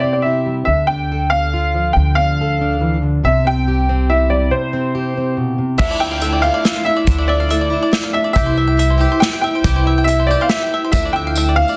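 Uplifting, warm indie folk in 3/4 at 140 BPM, cut from a longer piece, where a clear, slightly detuned upright piano carries the melody over a full-bodied fingerpicked steel-string acoustic guitar and a woody, thumpy pizzicato upright bass, before the arrangement builds at 5.8 seconds as a boxy, shimmering twelve-string acoustic guitar, a drum kit with a punchy kick played with bundle sticks and a bright, twangy bluegrass banjo playing arpeggios join in, with a jingly, distant tambourine arriving at 10.9 seconds, set in light reverb and a dense, heavily limited modern master.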